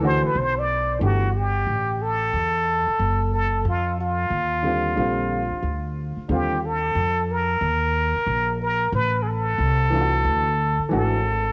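Jazz-hop excerpt at 91 BPM in 4/4 with a 16th-note swing, relaxed and warm in mood, tuned to A4 = 444 Hz and moving from D through Gsus2, Bb, Eb5 and Am back to D. A plunger-muted trumpet carries the melody up front with a brilliant, close-miked wah-wah tone and cassette-tape colouring, featured as a solo in the first second, while a dark, worn upright piano with audible action noise and slight detuning supplies intimate, mellow accompaniment, also on tape. Underneath, a growly, thumpy pizzicato upright bass with a woody steel-string sound sits forward, and light studio reverb rounds out this home cassette recording.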